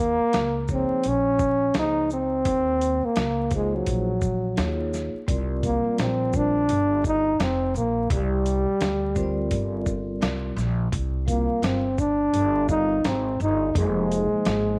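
A breathy, up-front trombone and a woody, growly pizzicato upright bass open this smoky, nocturnal jazz-hop excerpt in C minor at 85 BPM with a swung 16th feel, joined at 0.3 seconds by a gritty, compressed sampler-style drum kit of thumpy kick, medium-tuned snare, hi-hat and shaker, and at 0.7 seconds by a mellow soft-mallet vibraphone with slow motor vibrato, before the trombone takes a jazz-style solo with light vibrato from 5.3 seconds over chords moving from Ebm9 to Csus2 and Fm7, the whole sitting in vinyl crackle, light reverb and small room ambience.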